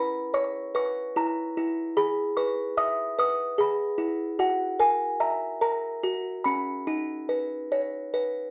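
A children's lullaby in a gentle, rubato 6/8, sleepy and innocent, carried entirely by a solo music box heard from 0.0 to 8.5 seconds. Its delicate, tinkling tone is soft and a touch out of tune, sitting up front with a slapback echo and a light reverb in a dry, close 1970s-style studio sound. The harmony drifts from C#m7 through E and F#7 before settling on Badd9, in this short fragment cut from a longer piece.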